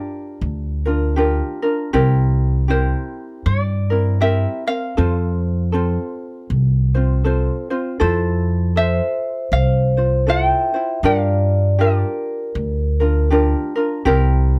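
A relaxed swing at 79 BPM in 4/4 sets a languid Hawaiian mood in F major, its eighth notes lightly swung. Two acoustic ukuleles share the work: one fingerpicks a light, mellow melody up high, while the other, thumb-plucked and up front with a warm tone, supplies the accompaniment just below it. A woody, dark upright bass with steel strings joins at 0.4 seconds, played pizzicato and sitting close and prominent in the mix. At 8.8 seconds a vibraphone struck with soft mallets, its motor off, adds a metallic, ringing second line in the middle of the sound, and it drops out with the melody at 13.3 seconds. The harmony circles through Gm7, C7, F and Fmaj7 across two matching passages, captured dry by close, detailed microphones in this short cut from a longer piece.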